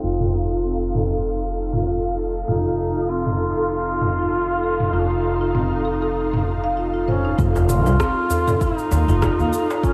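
A lightly swung sixteenth-note groove in 4/4 carries this meditative, earthy slice of organic downtempo, cut from a longer piece. A deep house drum kit of rim click, shaker and toms enters at 0.2 seconds, overdriven and muffled by low-pass filtering, while a woody pizzicato upright bass sits up front beneath it. A marimba with padauk bars plays arpeggios mid-forward in the mix, its tone shaped by a filter sweep that runs until 7.4 seconds, and an ethereal, airy pad holds detuned, chorused chords with a slow attack and sidechain pumping. Over this a distant, roomy duduk sings a folk-style melody with vibrato and scooped notes, trailed by tape echo and shimmer reverb. At 7.4 seconds a deep, overdriven electronic kick joins, with a crisp, very quiet metal-shell darbuka close behind, and the whole dreamy mix is soaked in a vast ambient reverb over a faint mains hum.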